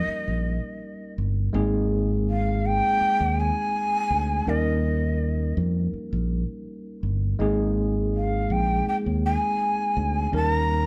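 A lightly swung sixteenth-note groove in 4/4 carries this romantic, lush 1970s-style soul fragment, where a breathy bamboo shakuhachi sings the melody with vibrato and a soft attack over a worn, slightly out-of-tune tine electric piano moving between Eb7, Abmaj9 and Abadd9, while a growly fingered electric bass sits up front from 0.1 seconds, all heard as a band playing live together in a large studio with moderate reverb.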